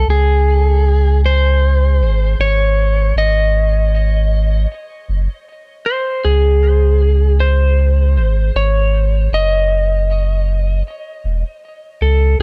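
Cinematic and hypnotic, this trip hop excerpt moves at 78 BPM in 4/4 with a 57% swing on the sixteenths, as a dark, clean electric lap steel guitar played with slide and fingerpicks carries the melody through tape echo while a deep, round sine sub bass holds the low end up front throughout the 12.4 seconds, all in a dry, echo-heavy mix.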